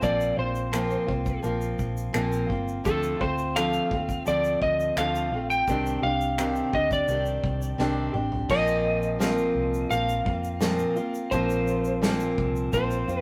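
A dark, slightly broken-up electric slide guitar carries the melody up front, played with fingerpicks and ranging from A4 to G5 across this short excerpt of heartfelt, sunny acoustic pop in Bb major at 85 BPM. Beneath it, a fingerpicked steel-string dreadnought acoustic guitar with fresh strings gives a full-bodied accompaniment, also sitting forward in the mix. A vintage muted fingered electric bass adds a round, foam-muted low end, while an unplugged acoustic drum kit played with bundle sticks offers a punchy kick, a medium-tuned snare, shaker, finger snaps, toms and crash cymbal. The chords move from Bbsus2 through Dm7 and Cmadd9, and a drum fill from 7.8 to 8.5 seconds leads into a new section as the harmony returns to Bbsus2. Light reverb and a rough rehearsal-room sound give the whole an informal, intimate character.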